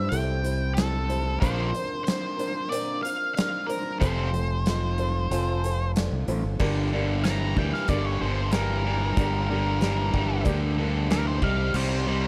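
A growling, overdriven fingered electric bass sits up front in this driving, swaggering classic rock excerpt in G minor at 93 BPM, joined by a huge arena drum kit with a fat snare, punchy kick and bright cymbals, two riff guitars entering at 1.4 s (one raw garage guitar with overdrive in the background, one tight and distorted), a woody, dark upright piano in the background and a very quiet, shimmering fingerpicked twelve-string acoustic guitar, while an octave-fuzz lead guitar carries the melody and takes a solo from 6.6 s over Gm and Cm.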